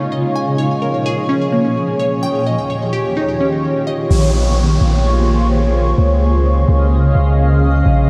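This hip hop excerpt drifts in a spacious, hazy half-time mood, with a shimmering, ethereal pad holding dark sustained chords from Bbm7 through Eb7 and Dbadd9 under chorus and phaser, a glassy, crystalline wavetable pluck spinning delayed arpeggios until 4.1 seconds, an electronic downlifter sweeping through, and a deep, mellow 808-style bass entering at 4.1 seconds, all bathed in a huge, dreamy reverb.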